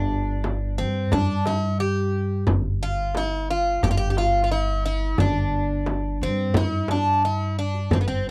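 Warm and stately, this brief, dry excerpt from a Turkish makam ensemble piece in hicaz sets a bright, metallic Greek bouzouki melody with octave-doubled strings up front over a woody pizzicato upright bass, while a deep, saturated clay darbuka sits in the background and a frame drum played with hard hands enters at 0.4 seconds, all captured with a close 1970s studio sound.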